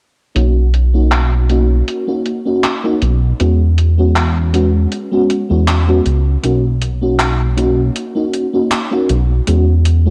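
A dark, warm mix with light reverb opens this nostalgic, woozy vaporwave excerpt at 79 BPM in B major, where a glossy chorused synth bass sits up front beneath a lush, dreamy FM electric piano with a soft pad layer carrying ensemble chorus and analog delay, while a gated 80s digital drum machine adds handclaps and low-passed hi-hats with gated reverb, all drifting between Bmaj7 and E69 with a gentle sixteenth-note swing.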